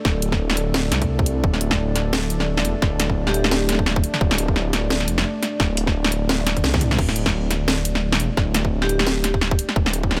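Half-time drum and bass at 173 BPM in 4/4, with a swung sixteenth feel, this short cut from a longer piece feels spacious and tense. A dark detuned saw bass rumbles up front from D1 to C2, deep and beating, while a moody analog pad holds sustained chords from A3 to D5, its wave-folded tone softened by chorus and pumping against the sidechain. The drum kit sits up front with a cracking snare, bright hats, crash cymbal and toms, all overdriven, alongside a tight, layered electronic kick that also carries overdrive. A drum fill breaks through at 6.3 seconds. Twice, at 3.3 and 8.8 seconds, a hard-mallet vibraphone rings a metallic G4 in the background, with slow motor vibrato and a dub echo trailing behind it. The sound is dry and close, with little reverb.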